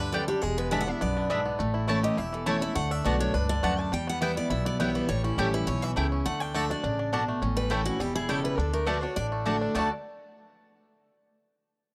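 A brisk 206 BPM in 4/4 with a light swing on the eighths drives this lively, virtuosic bluegrass excerpt in D major, moving through chords like E7, A, D6, Em and A7. A twangy, fingerpicked banjo and an up-front, bright dreadnought guitar carry the melody, while a second full-bodied picked guitar plays accompaniment, a growly, thumpy pizzicato upright bass holds the low end, and a woody double-strung mandolin adds stabs from 0.1 seconds. The sound is dry and close, like a 1970s studio session in a small room.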